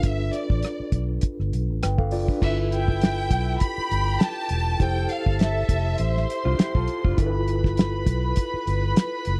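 A dry, close studio sound with little reverb frames this short cut from a lush 1970s-style soul piece, cinematic and bittersweet, with a gentle swing in its 4/4 groove. A cloth-damped drum kit sits up front with a fat snare, tight kick, rim clicks, hi-hat and dark crash cymbal, while a round, foam-muted fingered electric bass anchors the low end. A mellow tine electric piano plays clean accompaniment through its built-in speakers as the chords move from G9 to G13 and Fmaj7. A violin section carries the expressive, vibrato-rich melody from the start, sounding distant with a slapback echo, and a reedy string section with gut-string tone joins on a second line at 2.4 seconds. At 6.4 seconds an electric guitar through a small old amp adds a brief picked, slightly broken-up riff with tube saturation.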